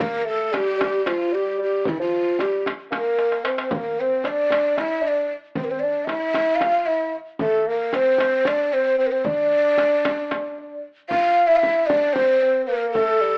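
A breathy, hollow end-blown ney carries the melody of this hypnotic, longing Turkish makam ensemble piece, its straight tone and soft attack placed up front with lifted highs. Beneath it, a mellow bassoon plays a second line in classical style, touched by light vibrato and also sitting forward in the mix. The music moves in 7/8 with a straight feel, its rhythm supplied by a crisp, small metal-shell darbuka, compressed and saturated, and a deep, large frame drum played with soft hands, close and dry, both placed lower in the balance. A drum fill arrives at 3.2 s, the darbuka drops out at 10.6 s, and a new section begins at 11.1 s as ney and bassoon carry on. The band plays live in one room with light reverb, and the recording has an AM radio sound, cut from a longer piece.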